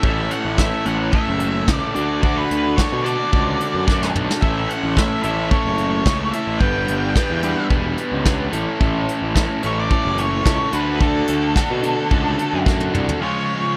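A dark octave-fuzz lead guitar carries the melody in this indie rock piece, its distorted, picked line colored by tape echo. Beneath it, a double-tracked overdriven electric guitar plays a warm, up-front riff, while a picked electric bass adds growly, bright fuzz to the low end. A soft brush drum kit sits close and natural in a studio room, with a tight kick, medium-tuned snare, hi-hat and toms, and it plays fills at 3.9 and 12.7 seconds. In a straight 4/4 feel, the harmony moves through A, D and G before landing on C# at 13.2 seconds. The mood is wistful and carefree, and the dry sound keeps the parts present.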